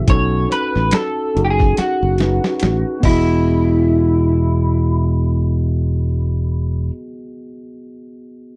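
A dark, slightly broken-up electric guitar through a small old amp carries the melody up front with a lush chorus in this sensual, relaxed R&B and neo-soul excerpt at 71 BPM in E major, over a mellow tine electric piano moving from B9 to Emaj9, a bright, growly fingered bass, and a gritty, compressed sampler-style soul kit of thumpy kick, snare, hi-hat, finger snaps and crash that plays a fill from 1.8 seconds before dropping out at 3.3 seconds, captured in a dry, close 1970s-style studio sound.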